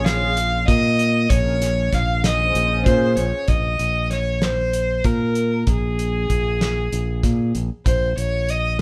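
A rich, lightly vibratoed fiddle carries the melody over a hollow, chorused pad that drops out at 3.1 s, a bright, punchy fingered electric bass and a cloth-damped, thuddy drum kit with a fat snare and tight kick, in this brooding, intricate progressive instrumental in 7/8 at 192 BPM in Bb minor, played live in one room with light reverb as the harmony moves from Bbm9 to a new chord at 3.5 s in this cut from a longer piece.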